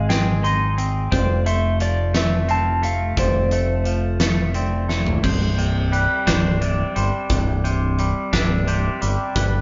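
A growling, overdriven fingered bass sits up front in this cinematic, euphoric post-rock passage in 6/8, cut from a longer piece, with a huge arena drum kit's punchy kick and fat snare, two clean, twangy picked electric guitar arpeggios (one compressed, the other scooped with a phaser and set in the background), and a dark lap steel slide melody in volume swells that drops out at 4.9 s just before a short drum fill leads into the second section, all played together in a moderate stone room.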